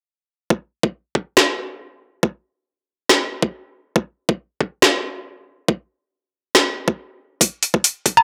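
Dubstep at 139 BPM in a half-time 4/4 feel with a light 16th-note swing, dark and meditative in mood, in a short passage cut from a longer piece. An overdriven, high-passed electronic kick with a knocking, layered character sits up front from 0.5 seconds, joined at 1.4 seconds by a garage drum kit of hi-hat, snare and woodblock, its snare woody and its hats metallic under its own overdrive. A moderate digital room reverb gives the drums a roomy tail of about 1.1 seconds.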